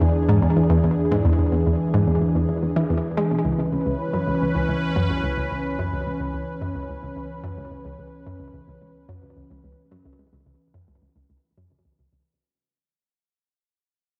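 Ambient at 109 BPM in a straight 4/4, this short cut from a longer piece feels expansive and hypnotic, drifting from E7 to C#m7 at 3.5 seconds. An evolving, full-bodied resonant pad holds sustained chords with a slow attack, its detuned sawtooth and sine layers sitting bright and up front with chorus. An analog pluck plays a riff through the whole passage, its snappy attack and short decay given shimmer by chorus and delay, while a filter sweep moves across a synth arpeggio sound. Beneath them, a deep, dark, round analog bass sits very quietly in its low register. The mix is echo-heavy, bathed in a moderate spring reverb, and the entire passage fades out across its 12.3 seconds.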